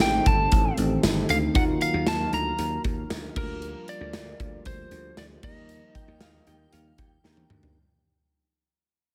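A straight 4/4 groove from a big, punchy rock drum kit with gated reverb drives this glossy, nostalgic 1980s-style pop passage, cut from a longer piece, with dry, growly thumbed slap bass underneath and a drum fill closing it at 7.2 seconds. Up front, a twangy, slightly broken-up lead guitar carries the melody with delay, while a bell-like tine electric piano and a thick, warbling, detuned unison pad with chorus sit in the background over chords moving from Am7b5 through Ebmadd9 and Bb6/D to Ebmaj7. At 5.9 seconds, a faint, shimmering FM bell with ensemble chorus, tremolo and delay adds a dreamy second line, all within a small room ambience and a fade-out.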